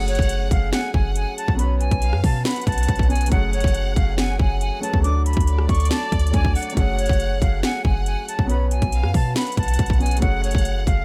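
A half-time 4/4 trap groove at 139 BPM drives this eerie, menacing hip hop excerpt in F# minor, where an overdriven, up-front drum kit with a hard-clipped kick, sharp snare, metallic hats and rim click enters at 0.1 s over a deep, boomy sine 808 bass, while a breathy, close-miked concert flute carries the tape-echoed melody above a distant, bright violin section with tape echo, a soft felt-muted upright piano with audible action noise, and a French horn section holding sustained chords in the background, all in a dry room as the harmony cycles through F#madd9, Bsus2 and D.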